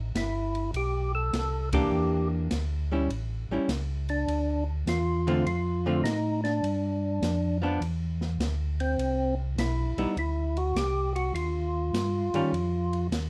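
A fat, lightly overdriven tonewheel organ with percussive attack and slow rotary speaker carries the melody in this greasy, swinging soul jazz organ trio excerpt at 102 BPM in C major, while a second, mellow and round organ with chorus vibrato holds down the bass line. A clean, hollow-body archtop guitar enters at 1.7 s with dark, picked accompaniment just after a band accent at 1.6 s. An acoustic drum kit with boomy kick, medium-tuned snare and dark cymbals swings underneath in a small room with light reverb, over changes moving from Am7 through Dm7 and G7 to Cmaj7 and Ebadd9.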